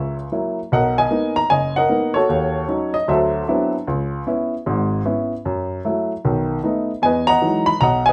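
A Gb7 chord on a baby grand piano opens this brief solo jazz fragment, cut from a longer piece, before the harmony settles on Bmaj7 at 0.7 seconds and moves through D#m7b5, D13, C#m7, F#m7 and B7 to land on Emaj9. The playing is sophisticated and playful, swinging its eighth notes at 152 BPM in 4/4 in B major, with the piano tuned to A4 = 441 Hz and ranging from F#1 to B5. The instrument sounds intimate, natural and up front, with short sustain and audible action noise, set in a moderate club reverb.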